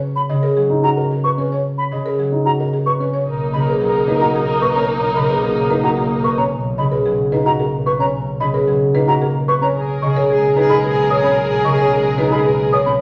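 Classical minimalist pattern music in triple metre, hypnotic and urgent, cut from a longer piece and set in a large, wet studio reverb. A buzzing, woody marimba carries the melody over ringing, fingerpicked harp, while an airy, hollow flute and a dark, mellow grand piano with audible action noise spin arpeggios almost from the start. At 3.3 s the harmony shifts as a clear soprano saxophone adds a second line, a lush bowed string section holds sustained chords and a smooth bowed double bass enters on a single low note; saxophone and strings drop out at 6.3 s and return at 9.8 s.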